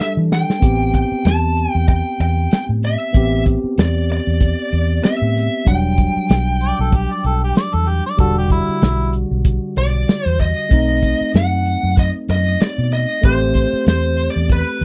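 Straight-eighth soul blues with a smoky, soulful mood at an unhurried mid-tempo, this cut opens on a brief drum fill from an up-front, dark-toned kit with a tight kick before a round, punchy foam-muted bass joins at 0.2 seconds beneath clean tine electric piano chords and a smooth, overdriven picked lead guitar melody, while a gritty amplified harmonica with tongue slaps, scooped notes and light vibrato slips in between 6.6 and 9.1 seconds, all captured in a dry, close 1970s-style studio sound with lossy compression artefacts.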